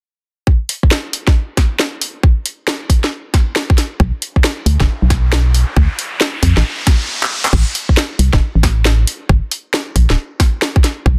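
Moody and late-night, this short cut from a longer UK garage track rides a two-step groove at 136 BPM in 4/4, with a 64% swing on the sixteenths. A tight, overdriven electronic kick sits up front from the start, joined almost at once by a layered garage kit of cracking snare, handclaps, hi-hat and crash cymbal, also pushed forward and gritty with overdrive. At 4.0 seconds a dark, hollow FM bass with an organ-like tone enters, its fast attack and decaying notes ranging from D1 to F2. An electronic riser builds quietly underneath from 4.9 seconds, and a drum fill at 7.2 seconds leads into the next section at 7.5 seconds. The sound is dry, with a dense, heavily limited modern master.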